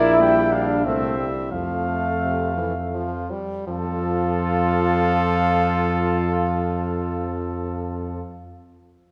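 Heard in the lush, reverberant acoustic of a church or concert hall, this short brass quintet passage, cut from a longer classical work, unfolds in a noble, stately 3/4 at around 81-96 BPM in F major. The music slows through its opening 3.7 seconds, moving over Gm/Bb, C and F chords before a new section begins at 3.7 seconds and carries on to about 8.1 seconds. A warm trumpet sings the melody from A4 to G5, while a distant, roomy flugelhorn with light vibrato traces a second line in the background. A clear, present French horn and a mellow, vintage-toned trombone, also touched with light vibrato, fill in the accompaniment behind them. Anchoring the ensemble, a close-miked bass trombone sits up front, sounding the bass line between Bb1 and F2.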